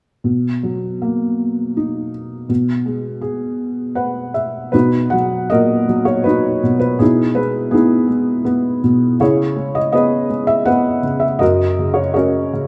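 Tender and intimate, this short passage of lyrical classical solo piano unfolds at about 81 BPM in 3/4, its beats uneven and stretched by rubato in B major. A felt-muted upright piano plays alone, sitting up front with a soft, mellow, boxy tone; the thin felt gives each note a muted edge, and audible action noise adds a close, homely texture. Its range spans F#2 to F#5, and the harmony drifts from Bmaj7 through Eadd9/B, then Emaj7/B and C#m7 before settling on F#. A brief piano fill at 3.6 s leads into a second, longer section beginning at 4.7 s. A moderate recital hall reverb surrounds the instrument, lending gentle space while keeping the sound personal.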